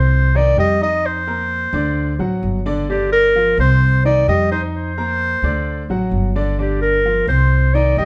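A clarinet, grand piano and upright bass begin together in this short cut from a longer Latin piece in the Cuban son and guajira style, set in G minor at 130 BPM in a straight 4/4. The mood is sultry and nostalgic, carried by a solo clarinet melody in a classical style, its tone clear and up front as it moves between G4 and Eb5. Beneath it, the grand piano plays arpeggios across a broad span from D3 to Eb6, its sound natural and sitting a little further back. The upright bass is plucked on gut strings, woody, dark and thumpy, and sits up front in the low register. The harmony cycles through Cm, F7sus4, D7 and Gm7, returning to Cm at 7.5 seconds, and all three parts play through to the end at 8.1 seconds. Light reverb gives the feel of a band playing live together in one room.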